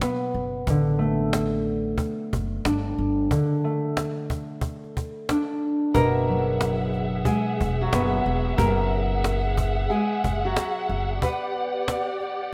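A swung boom-bap hip-hop groove at 91 BPM opens on a snappy, up-front cajon and thumpy pizzicato upright bass under a mellow, thumb-plucked concert harp with a cassette-tape tint, before a bright fingerpicked nylon-string guitar melody and a lush, expressive bowed string section with vibrato and portamento join at 5.9 seconds for a soulful stretch over suspended chords, ending in a short break at 11.2 seconds in this rough, small-room home demo cut from a longer piece.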